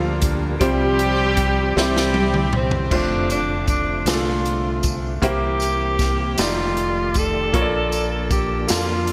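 Reverent and jubilant, this slow gospel excerpt in a straight 6/8 sets a breathy, whispered tenor saxophone up front with vibrato and scooped notes, joined for the opening 2.9 seconds by a punchy horn section, both carrying the melody through digital delay. A clear grand piano with audible action noise, a mellow tonewheel organ holding sustained chords in the background through a fast rotary speaker and chorus vibrato, and a round, dark fingered electric bass support them, while a big-band drum kit with dark cymbals and gated reverb plays a fill from 1.8 to 2.9 seconds. A jingly tambourine enters at 3.3 seconds, and the whole sits in a lush hall with bright 1980s-style digital polish.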